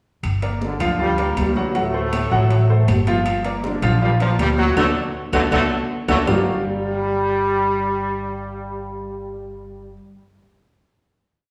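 Danceable and passionate, this short salsa piece in G minor moves at 159 BPM in a straight 4/4, built on a montuno vamp that runs until 6.3 seconds before settling onto a final chord. The up-front upright bass plays a woody, thumpy pizzicato tumbao on gut strings that anticipates the chords, while a clear concert grand piano, present with a deep bass and short sustain, lays down a montuno in octaves. Over them, a brilliant, tight trombone section carries the melody with hook phrases, light vibrato and partly octave-doubled lines in a pop style. In the background, woody, close claves tap out a two-bar time line, bright high-tuned congas mix slaps and open strokes with hard hands, and ringing, saturated timbales play shell patterns and bell, all three percussion parts dropping out at 6.4 seconds. A band accent from 4.8 to 6.3 seconds falls on the D chord before the return to Gm7, and the whole ensemble sits in the wet reverb of a recital hall.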